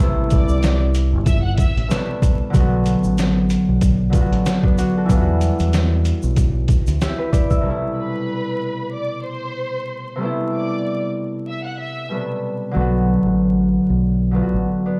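Moody and dark, this boom-bap hip-hop excerpt moves at 94 BPM in A dorian with a lightly swung 16th-note feel. A bright, ringing concert harp is fingerpicked up front throughout, carrying the Am9, Bm7 and Em7 chords. A deep, round fingered electric bass sits alongside it, and a sampler-style trip hop drum kit sits up front with a thumpy kick, a medium-tuned snare and hi-hat, sounding pitched down, muffled and overdriven. A grainy tube shaker adds texture in the background. After a brief opening phrase from the distant, lush bowed violin section, the drums and shaker stop at 7.6 s, and the violins return at 8.0 s with soft-attack, expressive vibrato and tape echo. The bass comes back at 12.8 s, and the whole mix sounds as if played through a big sound system in a bare stone room, dusted with vinyl crackle.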